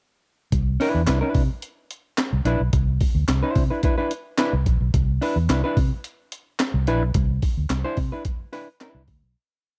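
A round, amped fingered electric bass leads this short, cool funk piece, playing a syncopated riff anchored on the downbeat with chromatic approach notes. Beside it, a gritty, compressed breakbeat sampler-style drum kit lays down a heavy on-the-one funk beat, with a thumpy kick, a high-tuned snare, hi-hat and handclaps. A clean hollow-body jazz guitar enters at 0.8 seconds with clipped funk chords in its middle register, sitting up front with the bass and drums. The dark, warm production keeps the sound dry and close, and the whole groove fades out from 7.1 seconds to its close at 9.4 seconds.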